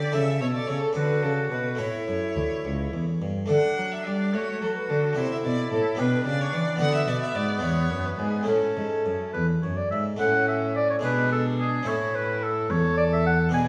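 Classical baroque-style sonata movement with continuo, serene and flowing at 72 BPM in a rubato 6/8, cut from a longer piece and moving from D major to A major at 6.8 s, where a rich, expressive violin with vibrato and portamento carries the melody from a distance, a clear oboe with light vibrato sings an up-front second line, a bright plucked harpsichord in French style fills the accompaniment, and a smooth, even, close cello with vibrato holds the bass, all set in a wet stone room heard from further back.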